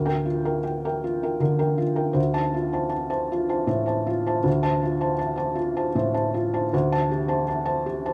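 A soft, close, felt-muted upright piano with audible action noise and light reverb plays alone in this melancholic, intimate fragment of neoclassical minimalist music in D minor, moving rubato in 3/4 at 79 BPM from D2 to A5 through Gm7/D, Dm7 at 2.2 seconds and Am7/D at 6.7 seconds, cut from a longer piece and lasting 8.1 seconds.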